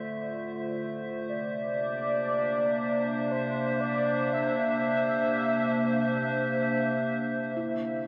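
A warbly, tape-like pad fades in on a Dm9 chord to open this melancholic, serene ambient piece in free time, joined at 1.3 seconds by a velvety, detuned synth lead carrying a chorused, tape-echoed melody, before a felt-muted upright piano with audible action noise plays a brief, intimate arpeggio at 7.6 seconds, the whole scene set in a huge, wet reverb space.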